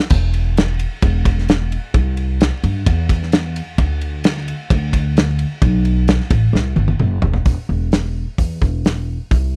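A loose, acoustic indie drum kit sits up front, its punchy kick and medium-tuned snare framed by hi-hat, ride and crash cymbals and toms, with a mid-forward, small-room character. This short indie rock excerpt moves at 131 BPM in a straight 4/4, and its mood is bittersweet and moody. Alongside the kit, a pizzicato upright bass with steel strings plays from E1 to G2, its tone woody and dark and also placed close to the listener. A drum fill arrives at 6.5 seconds and leads into a new section at 7.5 seconds, after which the drums stop at 9.4 seconds while the bass carries on briefly. The dry, close sound recalls a 1970s studio, with little reverb around either instrument.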